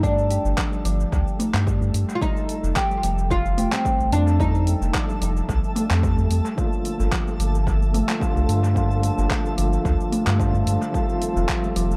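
A plectrum-plucked, fretless oud with doubled strings carries the woody, up-front melody through tape echo until 5.5 seconds, in this earthy, meditative organic downtempo cut from a longer piece. Beneath it, a mellow kalimba plays hollow, boxy arpeggios roughened by vintage 12-bit sampler grit and tape echo. A deep, round analog bass pumps to the sidechain under a punchy electronic kick and a lightly swung deep house kit of handclaps, hi-hat and shaker in dub echo, while a twinkling granular texture adds octave-up shimmer in its own reverb. At 6.6 seconds a barky, overdriven tine electric piano enters through a combo amp with medium tremolo, sidechain pumping and dub echo, all within an echo-heavy mix of light reverb and digital ambience.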